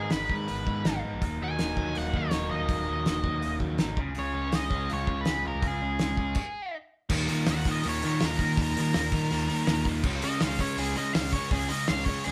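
An octave-fuzz lead guitar, dark and up front, carries the melody from the first second of this restless, cool indie rock cut in Eb minor at 163 BPM, and from 7.1 s it steps into a solo over a shift to Eb5 and Db5 chords. Beneath it, two overdriven electric guitars play riffs: one is bright and compressed, the other biting and set back in the background. A growling picked bass with overdrive adds a punchy, amped edge, while a cloth-damped drum kit sits up front with a fat snare, tight kick, dark cymbals and a rolled-off top. A stop at 6.4 s briefly breaks the driving straight-time momentum before the solo section kicks in. The band sounds like it is playing together in one room, wrapped in a moderate studio reverb, and the clip is cut from a longer piece.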